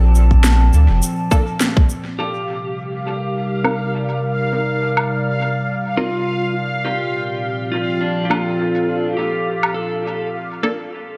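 A deep, spacious room sound with a moderate echo chamber tail frames this short ambient dub cut at 103 BPM in C dorian, where a warbling, lo-fi tape-like pad holds dark, detuned chords shifting from Bbmaj7 to Cm7 and back. A round sine sub bass and a tight, overdriven electronic kick sit up front only briefly at the start, while a woody, muffled shaker, snare and woodblock kit with dub echo carries a gently swung groove. A muted, phased chord stab enters in the background at 1.3 s. From 2.2 s, a clean, slide-played lap steel with volume swells sings through dub echo, a resonant, bubbling stepped-filter texture floats high, and the stab, now under a filter sweep, lingers into the break at 10.3 s.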